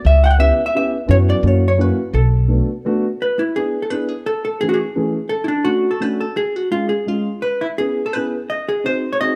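Close, detailed microphones and a light reverb give this short musette waltz a nostalgic and bittersweet air, cut from a longer piece in B minor at 171 BPM in a straight 3/4. A vintage hollow-body electric jazz guitar carries the melody from 0.1 seconds to the end, its clean, picked tone dark and up front. A dark upright piano joins at 0.4 seconds as accompaniment, mellow and woody with a boxy body and long sustain. The pizzicato upright bass opens the recording with a thumpy, steel-strung sound, then stops at 2.6 seconds. The harmony moves from C#m7b5 through F#7 to Bm7, then shifts at 3.2 seconds into a second section that passes through E7, Amaj7 and Dmaj7 before closing on C#m7 and G#7.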